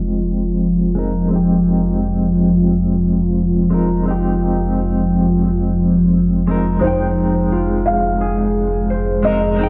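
Cinematic and brooding, this trip hop fragment from a longer piece sits on a single Fm7 chord in F minor at 87 BPM with swung 16ths, where a clean, picked electric guitar with tremolo, tape echo and a filter sweep rides over a deep, warbling ambient pad with chorus and vintage 12-bit sampler grit and a round analog bass holding F1, until at 6.8 s a mellow felt-muted upright piano melody, its action noise audible, and bright, ringing concert harp arpeggios enter through tape echo, all set in a stone room reverb with vinyl crackle as if played on a big sound system in a bare room.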